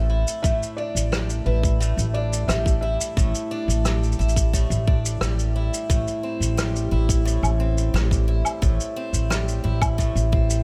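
Folktronica at 88 BPM in 4/4 with a straight feel, this short cut from a longer piece carries an autumnal, wistful mood. A picked twelve-string acoustic guitar plays shimmering, octave-doubled arpeggios from A2 to E4, its bright, boxy tone passed through a low-pass filter and delay. Beneath it an upright bass sits up front on A1, pizzicato on gut strings, woody and thumpy with a touch of tube saturation. A tight, produced electronic kick drum pairs with a distant, roomy kit of shaker, rim click and woodblock played with brushes, which has a rolled-off top. A felt-muted upright piano carries a brief melody between B4 and E5 from 0.4 to 4.1 seconds, its thick felt giving a mellow, intimate sound with short sustain and audible action noise. The harmony moves from Em7/A to C/A at 5.9 seconds, all within a small room ambience.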